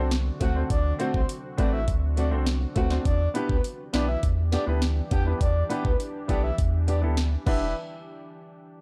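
A short cut from a longer dancehall piece opens at 0.0 with a round, deep sub bass, a woody, boxy fingerpicked acoustic guitar playing arpeggios on old strings, and a polished grand piano holding down the accompaniment. An electronic island pop drum kit arrives up front at 0.1, with a knocking kick, a sharp snare, metallic hats and crash cymbal, all roughened by overdrive and the sound of a small room. Behind it, a moody, detuned sawtooth pad with a slow attack sustains chords in the background, treated with chorus, reverb and sidechain pumping. At 0.4 a soft, breathy flute-like synth lead takes the melody, its vibrato shimmering through chorus and tape echo. The groove sits at a straight 102 BPM in 4/4 in E minor, moving from D7 to Em7 at 3.1 seconds, and the dark, digital production gives the whole cut a sultry yet tough mood.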